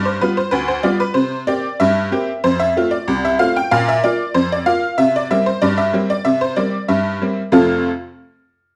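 A wet studio reverb surrounds a tack piano that sits up front, its jangly, metallic tone bright and percussive with a short sustain and a vintage character. This jaunty, lively ragtime piece, cut from a longer work, moves at 94 BPM in a straight 2/4 in F major, with the solo piano spanning C2 to G5 over G7, C7, F and Bb5 chords. A new section arrives on F at 7.5 s, and the piano stops at 7.9 s.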